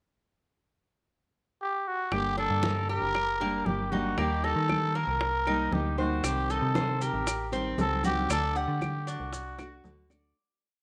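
Sultry and nostalgic, this short Cuban son and guajira piece in G harmonic minor moves at 116 BPM, as a veiled, raspy cup-muted trumpet opens alone at 1.6 seconds with growling, scooped hook phrases before fingerpicked nylon-string guitar, a syncopated metallic FM bass, round bongos, woody claves and distant congas join at 2.1 seconds over Gm, Eb, Cm and D, an arpeggiated tres guajeo with double strings follows at 2.4 seconds, grainy maracas arrive at 6.2 seconds, and the piece fades out from 8.3 seconds under a drum fill in light small-room reverb.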